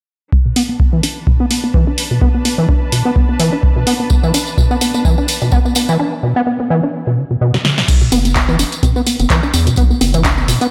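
Acid house at 127 BPM in B minor, this short excerpt from a longer piece feels trippy and driving, with a lightly swung 16th-note pulse over a Bm7 chord that shifts to B5 at 7.9 seconds. A deep, tape-warm electronic kick sits up front beside a punchy analog drum machine playing congas, crash cymbal, handclaps, hi-hat and a punchy snare that was re-recorded in a large room, while a jingly, close acoustic tambourine joins at 4.1 seconds. The centrepiece is a rubbery, resonant square-wave acid bass riff with a dark filter pluck, roughened by overdrive, trailed by a diffuse ambient delay and reshaped by filter sweeps throughout. Behind it, a muted, veiled string section played con sordino with vibrato fades in from a distance, pumping against the kick until it drops out at 6.0 seconds. After a drum fill, a round, mellow, wave-folded analog bass enters at 7.9 seconds, low and sustained with its own sidechain pumping, and the whole mix is soaked in a lush, dreamy hall reverb.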